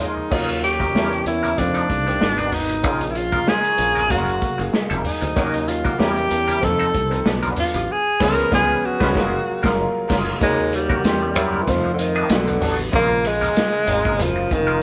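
Bittersweet and cinematic, this lush 1970s-style soul excerpt moves at a relaxed 95 BPM in Eb minor with a gentle sixteenth-note swing. A breathy, up-front tenor saxophone carries the melody in a jazz style, with vibrato and scooped notes, while a clear grand piano sits in the background. A bright, clean semi-hollow electric guitar plays a compressed, picked riff through a wah, and a growly, punchy fingered electric bass enters at 0.3 seconds. The muffled, lo-fi vintage drum kit has a medium-tuned snare, a tight kick, hi-hat and crash cymbal, backed by very quiet, low-tuned congas played with hard hands and a mellow, airy vibraphone with soft mallets and slow motor vibrato. The chords circle through rich minor sevenths, a diminished passing chord and a Gbmaj9 resolution, with a band accent from 7.9 to 10.4 seconds before the second section begins. The band plays live in one room with moderate studio reverb.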